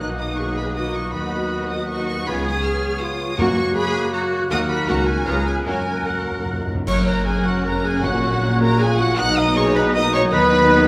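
In a rubato triple metre, this stormy, dramatic excerpt from a fast romantic orchestral movement sets a lush, vibrato-rich first violin melody above a dark, distant second violin line, with a hollow flute section, a mellow, roomy clarinet and a solo oboe adding background lines, while a smooth, very quiet viola section accompanies, a French horn section holds sustained chords, a bright concert harp rings out arpeggios, and a focused, close cello section joins an intense double bass section on the bass, all in a reverberant recital hall, as timpani enter at 3.4 s and play a fill from 5.7 s, and clash cymbals with concert bass drum strike a bright accent at 6.9 s.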